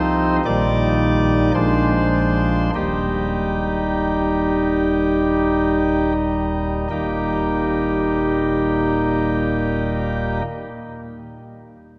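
A pipe organ's nasal cornet solo stop, with baroque voicing, a distinct chiff and an up-front placement, carries this majestic, reverent classical chorale-style excerpt in Eb major and 3/4 at a rubato 40-57 BPM, slowing through the opening 6.9 seconds as chords move from Eb/Bb to Bb9 and home to Eb before the organ falls silent at 10.4 seconds, its tone bathed in a long, wet cathedral reverb.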